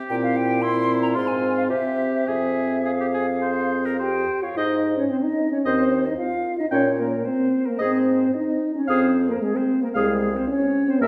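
An oboe opens this quick, urgent classical-period movement for wind quintet at 0.0 s, and the flute, clarinet, French horn and bassoon join at 0.1 s. In 4/4 at 104-115 BPM with a restless rubato feel, it begins in F minor and turns to Ab major at 4.6 s. The silver concert flute carries the melody with a pure metallic tone, a soft attack and vibrato, while the oboe sings a second line with a smooth top and light vibrato. The clarinet sounds clear but distant in the background, and the dark French horn sits up front in the accompaniment. The bassoon supplies a warm bass with a touch of vibrato, and a wet recital hall reverb places the ensemble further back in the room in this passage cut from a longer piece.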